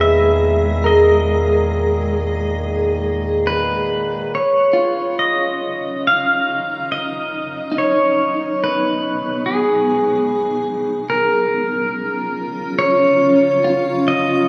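Ambient, serene and reflective, this piece sets an up-front, twangy pedal steel melody with slide and volume swells, trailed by diffuse delay, over a cloudy, bright granular pad that fades in from 4.3 s and slightly broken-up electric guitar arpeggios from a small old amp, while a round analog bass, a reedy, breathing pedal harmonium drone and a barely audible glassy harmonics texture fill only the first few seconds, inside a vast, echoing cathedral space.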